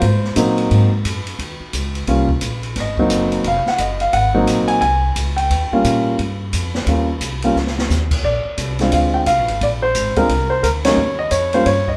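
Swinging eighth notes in 4/4 carry this relaxed, sophisticated jazz piano trio fragment, played live in one large studio room, where an up-front grand piano with short sustain carries the melody over woody pizzicato upright bass and an open acoustic drum kit with dark cymbals and a boomy kick, with a brief drum fill at 7.6 seconds and a band accent at 10.8 seconds.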